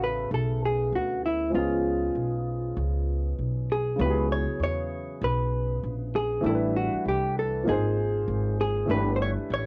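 A clean, hollow-body electric jazz guitar carries the melody up front in this short, swung jazz-hop excerpt, its fingered tone dark and compressed under a cassette-tape patina. Beneath it, a worn, intimate grand piano accompanies with short sustain and audible action noise, while a woody pizzicato upright bass with steel strings, thickened by tube saturation, sits up front at the bottom. The mood is cool and mellow, moving from Bm7 and C#7 into a second section at 4.0 seconds that drifts through C#m7, Am11 and G#add9 before settling on G, heard in the moderate booth ambience of a home cassette recording.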